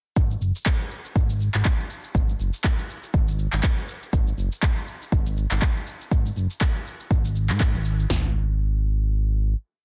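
Driving and spiritual, this short afro house piece moves at 121 BPM in 4/4, with a 57% swing on the sixteenths giving the groove a loose lilt. From 0.2 seconds a deep house drum kit sets a four-on-the-floor pulse with a deep kick, a punchy snare and floor tom, its electronic, layered sound overdriven and re-recorded in a large room, sitting up front in the mix. Alongside it, an electronic shaker and handclaps supply programmed hats and a backbeat, also overdriven with a large-room character but set lower in the balance. A smooth, dark synth bass blending sawtooth and square waves carries a syncopated riff between F#1 and G#2, its fast attack, sustained notes and portamento glides pumping against the kick through sidechain compression. The groove runs until about 8.1 seconds, after which the bass holds a final note until 9.5 seconds, all within a dry, dense and heavily limited modern master.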